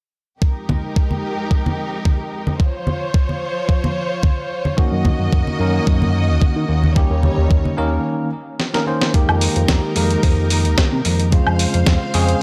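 A thumpy, overdriven electronic kick sets a lightly swung pulse for this sensual, sleek nu-disco piece, cut from a longer track, with low-tuned congas struck by hard hands joining just after and playing until 7.8 seconds. A lush bowed string section holds smooth, vibrato-rich chords from the start, its sustained harmonies moving through minor eleventh and major seventh colours with a breathing sidechain pump. At 4.8 seconds a fat, detuned analog bass enters with a filter sweep and a moving notch, alongside a bell-like, bright tine electric piano whose accompaniment carries tape echo and its own sidechain pumping. After a short break, a gritty soul sampler-style kit arrives with a drum fill at 8.6 seconds, bringing a fat snare, hi-hat and woodblock up front as the music moves into a new section at 9.1 seconds. The sound is dry and hardware-rough with only light reverb, the strings placed close and rich and the congas close and warm.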